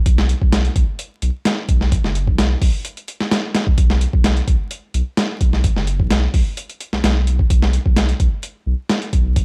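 Dry, gritty hardware sound and vinyl crackle frame this energetic, funky breakbeat fragment at 129 BPM, where an overdriven, compressed sampler-style drum kit sits up front with a thumpy kick, medium-tuned snare and hi-hat over a deep, thick, saturated sine sub bass that holds sustained notes from 0.1 to 9.4 seconds.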